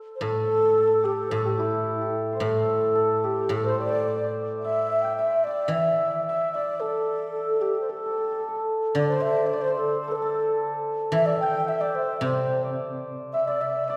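Graceful and tender, this Chinese traditional chamber piece moves at 110 BPM in a straight 2/4, set in the A yu mode and tuned slightly low to A4 = 439 Hz. A hammered dulcimer opens at the very start, up front with a shimmering, ringing tone, before the ensemble joins at 0.2 seconds. A breathy, mellow bamboo xiao carries the melody with vibrato and tongued notes, while a second, lower xiao adds a pure, distant line, kept very quiet beneath it. Underneath, a guzheng played with fingerpicks supplies a silvery accompaniment in its low register. The music shifts into a new section at 9.0 seconds, and the whole ensemble sits in a wet concert hall reverb that lingers for 2.2 seconds, a brief cut from a longer piece.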